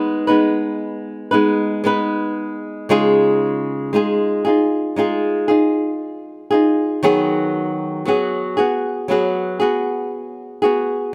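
Emotional and melancholic, this short pop fragment at a slow 58 BPM features a solo fingerpicked flamenco guitar, acoustic and up front with audible finger squeaks, moving from Abm to Dbadd9 at 2.9 seconds and on to B6/D# at 7.0 seconds, all set in a moderate plate reverb.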